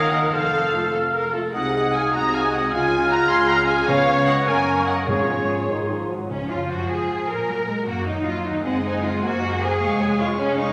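Dramatic and restless, this rubato classical excerpt in 6/8 sets a rich, distant violin melody over dark, woody second violins, bright violas, clear cellos and warm double basses, while an airy flute, a smooth-topped oboe, a mellow clarinet and a vintage-toned French horn section colour the opening until about 6.3 seconds, timpani with calf heads sound from 3.9 seconds, and a wet scoring-stage reverb bathes the full orchestra.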